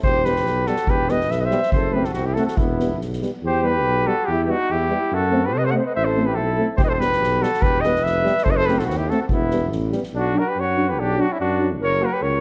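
A straight two-beat pulse drives this short, restless Balkan brass band passage, cut from a longer piece and carried by a drum kit played with soft mallets, its boomy kick and medium-tuned snare sounding acoustic and natural in the hall. The kit drops out at 3.3 seconds and returns at 6.8 seconds. Up front, the cornet takes the virtuosic melody with a smooth top and light vibrato, while a distant, roomy flugelhorn traces a second line beneath it. A tuba, also placed up front yet roomy, anchors the bass, and a soft-attack euphonium and vintage-toned trombone sit in the background as mellow accompaniment, all playing in a classical style. The harmony circles between Em and F#dim with a brief turn to Am before closing on Bm and F#, all set in a moderate recital-hall reverb with a dark production.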